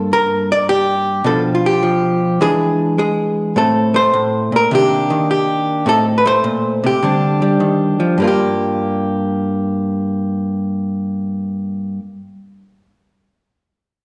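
A swung 4/4 at 104 BPM sets a moody, late-night feel for this solo jazz piece in G minor, cut from a longer performance. A vintage hollow-body electric jazz guitar plays alone and up front, its dark, clean, picked tone compressed and ranging from G2 to D5, moving through chords such as Gmadd9, E7, Cm9 and D7sus4 before settling on Gm7 at 8.2 seconds. A lush scoring-stage reverb with a 1.7-second tail gives the guitar the airy spaciousness of a church or concert hall.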